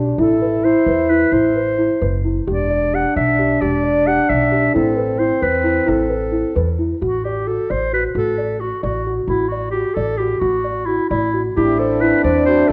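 A mellow French horn, a delicate, bell-like celesta with soft felt hammers and a woody pizzicato upright bass open this urgent, pensive fragment of contemporary chamber music in A dorian, moving in 5/8 at 264 eighth-note beats per minute. A smooth, soft-attacked clarinet soon takes the melody up front over celesta arpeggios, while the horn carries a second line until 6.8 seconds and returns at 11.6 seconds, when a reedy, breathing pedal harmonium enters with sustained chords in the background. The ensemble sits in a moderate recital-hall reverb, colored by the worn, warbly pitch drift of old cassette tape.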